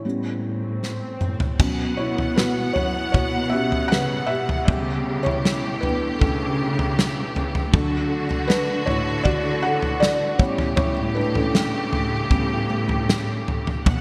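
A felt-muted upright piano, intimate with audible action noise and a subtle chorus, opens this longing, melancholic pop ballad excerpt over a dark, bowed cello section with vibrato and a soft attack, while an electronic swell sounds beneath them. A loose acoustic indie drum kit, sitting up front with a tight kick and gated reverb across its crash, snare and toms, enters with a fill at 0.8 seconds. At 1.6 seconds a lush, focused string section joins with sustained chords moving through Bsus2, A7, D and back to A7, all set in a hall reverb with bright 1980s-style digital production.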